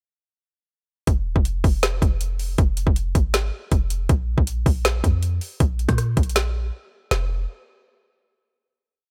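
An up-front electronic trap kit drives this short, menacing and melancholic hip hop piece, with a hard-clipped kick, woody snare, rim click and metallic hats playing a half-time beat full of fast hi-hat rolls. Underneath, a clean, deep 808-style bass with a sine-like, dark, boomy tone holds long sub-bass notes that follow the kick, each with a fast attack that decays, and with pitch slides. Both enter at 1.1 seconds for the hook, break briefly near 6.7 seconds, and leave the bass to sound the final note until 7.5 seconds, all in a dry sound.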